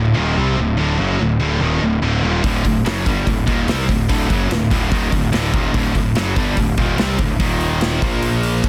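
Dark and heavy, this short heavy metal excerpt, cut from a longer piece, moves in a straight 4/4 with an exotic, tense harmonic flavor. Two distorted, picked electric guitars play the riff from the start, one high-gain and bright, sitting up front, the other bright with a scooped midrange, together covering a low-to-middle register. A fuzz-drenched picked electric bass growls underneath, overdriven and up front with a bright bite, holding down the bottom end. The harmony rests on D before shifting to Eb5 at 7.4 seconds and Bb5 at 8.0 seconds. A big acoustic rock drum kit enters at 2.4 seconds, with a punchy kick, a medium-tuned snare, hi-hat and bright crash cymbals placed up front in a small studio room. The whole mix is dense and heavily limited, giving it a loud, modern, compressed impact.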